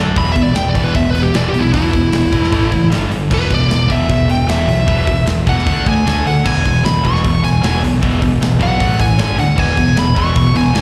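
A smooth, overdriven lead guitar solos from 0.2 seconds across this short hard rock cut from a longer piece, its picked line ringing through slapback and tape echo over a bright, double-tracked distorted guitar riff and a fuzzy, overdriven picked bass. A tight metal drum kit with a medium-tuned snare, tight kick, hi-hat and crash kicks off with a fill at 0.0 seconds and drives the straight 4/4 at 153 BPM. The powerful, anthemic sound comes across like a live gig through the venue's PA, with little reverb and chords moving among E5, A5, G5 and D5.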